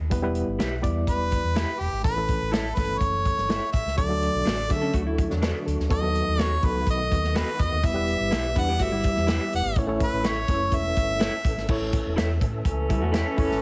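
A clear, up-front harmonica carries the melody from 1.1 s in this uplifting, joyful slice of uptempo 1960s-style soul at 124 BPM, riding over a round, dark fingered bass, a natural country drum kit with a punchy kick, a barky reed electric piano with fast tremolo, and background stabs from an electric guitar through a small old amp. A fat, lightly overdriven tonewheel organ with fast rotary speaker adds sustained chords from 4.0 s, a clean hollow-body jazz guitar plays a riff, and a punchy vintage horn section arrives at 12.7 s with a second line. Throughout, the chords move through Em, A, D and B7. The whole mix has light reverb and a heavily compressed radio sound, and the excerpt is cut from a longer piece.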